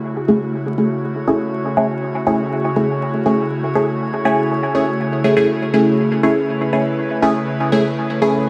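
Dub techno with a hypnotic, cavernous mood, this short cut from a longer piece sits on a single F#m7 chord throughout. An airy, breathy pad holds sustained chords from the very start, its detuned sawtooth and triangle tones, noise layer and chorus giving it a soft, warbling, vintage character up front in the mix. Above it, a quieter glass-harmonics texture drifts on one high note, its calm sine tone blooming slowly with shifting overtones, chorus and its own built-in reverb. At 0.3 s a filtered dub chord stab enters, the loudest part, muted and dark with a quick filter pluck, a moving notch, phaser and dub echo trailing each decaying hit. An echo chamber reverb and a layer of vinyl crackle frame the sound, lending it a dusty, spacious depth.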